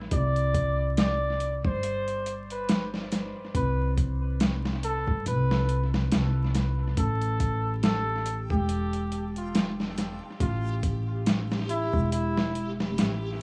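A bucket-muted trumpet, veiled and forceful with vibrato, carries the jazz-style melody through dub echo in this brooding, dark trip hop excerpt at 70 BPM in A minor, with a swung 16th-note feel. Beneath it, a woody pizzicato upright bass and a gritty, overdriven sampler-style drum kit with a thumpy kick, medium-tuned snare and hi-hat sit up front, the drums also fed through analog delay. From 7.8 seconds a reversed, detuned granular texture swells dreamily in the background, all set in an echo-heavy mix with vinyl crackle and small room ambience.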